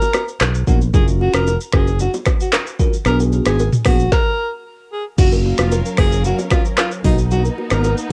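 A breathy, whispered alto saxophone opens this sunny, breezy afrobeats fragment at 113 BPM in F# major, over an overdriven, up-front electronic drum kit with a deep kick, woody snare and metallic hats, plus very quiet ringing bongos and congas. A growly fingered electric bass and a bell-like tine electric piano, lush with chorus and plate reverb, soon join on chords moving between Bmaj7, F#maj7 and Bm6. After a brief stop at 4.1 seconds, a veiled, muted string section enters at 5.2 seconds with soft bowed chords, all colored by the cassette character of a home recording in a lightly reverberant room.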